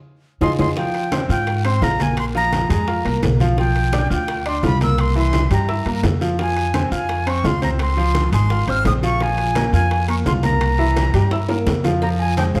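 A driving 4/4 salsa groove at 171 BPM in F minor opens with a band accent and drum fill, the upright bass thumping up front with a woody, growly pizzicato tone while low-tuned congas, tight bongos and cowbell, and ringing timbales and agogo bells sit in the background, and a raspy guiro sounds close and dry. A breathy, reedy concert flute carries the fiery melody high with vibrato and a crisp attack, over a clear but worn grand piano accompaniment that stays present with deep bass and short sustain, moving through Fm, Bb5, C7 and Dbmaj7 changes. Set in a moderate large studio reverb, this cut from a longer piece closes with another drum fill at 11.3 seconds before landing back on Fm at 12.0 seconds.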